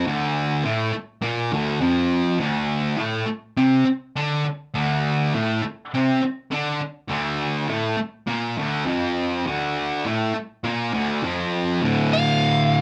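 A bright, double-tracked fuzz guitar sits up front and drives this gritty, menacing rock excerpt with a compressed, distorted riff over a D minor chord, spanning D2 to D4 at 102 BPM in a straight 4/4. At 12.1 seconds an overdriven slide guitar slips in with a warm F5 melody note, and both parts share a small room's moderate reverb.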